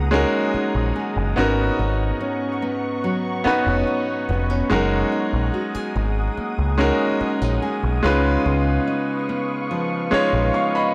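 A straight 4/4 pulse at 72 BPM carries this smooth, tender contemporary R&B excerpt in F# major, moving through F#6/9, G#m11 and C#9 chords. A clear, natural grand piano and a round, dark picked electric bass sit up front, the bass dropping out at 10.5 seconds, while a fingerpicked nylon-string guitar with fresh, full-bodied strings plays arpeggios through tape echo. Behind them, a glassy, ethereal FM pad holds slow-attack chords softened by ensemble chorus and reverb, all set in a small, dry room with a gritty hardware character and transformer saturation.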